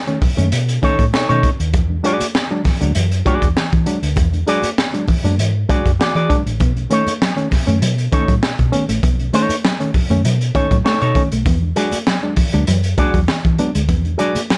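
Funk at 99 BPM with a gritty, energetic feel, cut from a longer piece: a crunchy, saturated breakbeat kit with a high-tuned snare and tight kick pumps up front alongside a round, dark hollow-body bass, a twangy envelope-filtered guitar and reedy, slightly out-of-tune electric piano stabs over B9 and E9 chords, while bright, very quiet hard-hand congas join in and a mellow fingered guitar riff enters in the background at 6.6 seconds, all in a dry, dark production.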